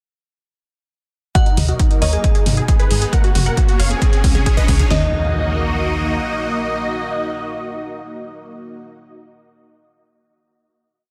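A four-on-the-floor 135 BPM pulse in straight 4/4 drives this short, euphoric uplifting trance piece in Eb minor, with a punchy kick and cracking snare up front alongside metallic programmed hats and toms from 1.4 s, building through a filter sweep on a detuned supersaw stab riff that repeats over a pedal note in sixteenths, in thirds and sixths, while a riser leads into the drum fill before the kit drops out near 5.0 s. A thick, bright unison pad with chorus and phaser holds sustained chords through Ebm, Abm, Gb and Db, pumping against the sidechain along with the supersaw and a funky, dark analog bass playing off-beat filter plucks until 6.2 s. A crystalline FM bell riff sits in the background with chorus and delay as everything but the drums and bass rings out on a final Ebm chord from 4.9 s to 8.5 s in a dense, heavily limited digital ambience.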